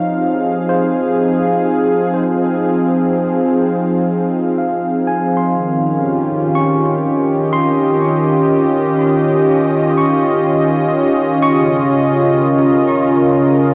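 Reflective and spacious, this ambient excerpt in 3/4 places a smooth, detuned sawtooth analog pad with chorus up front on sustained chords moving from Fm7 to Eb9 to Db69, while a bell-like, barky tine electric piano played through a combo amp fades in with arpeggios trailed by diffuse delay, set inside a huge reverb and the worn, warbling pitch drift of old cassette tape.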